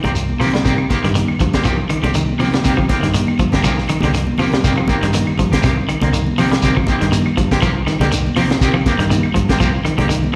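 Afrobeat at 121 BPM in C minor, this short cut from a longer piece feels intense and hypnotic, with a light 16th-note swing over a single Cm7 chord. A clean, scooped electric guitar plays fingered arpeggios in a low register with slapback echo, while a second, picked guitar at the edge of break-up adds slightly broken-up stabs colored by harmonic tremolo and its own slapback. Underneath, a round, foam-muted fingered bass sits dark and direct. The crunchy breakbeat kit is saturated and rolled-off on top, with a punchy kick, a high-tuned snare and hi-hat, and it drops a brief fill at 3.3 seconds. Bright, high-tuned congas, a grainy shekere and woody, distant claves sit in the background, and the whole performance comes across as a live gig heard through the venue's PA, wrapped in a moderate club reverb.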